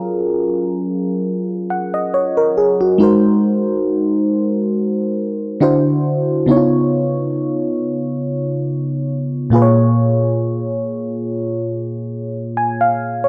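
A dry, gritty hardware sound with light reverb frames this late-night, longing R&B fragment, where a solo FM electric piano, round and dark with a noise layer, chorus and phaser, sits up front over a lightly swung 4/4 feel and moves through Gbmaj7, Ab9, D9, Db7 and Bbm7 across its 13.3 seconds.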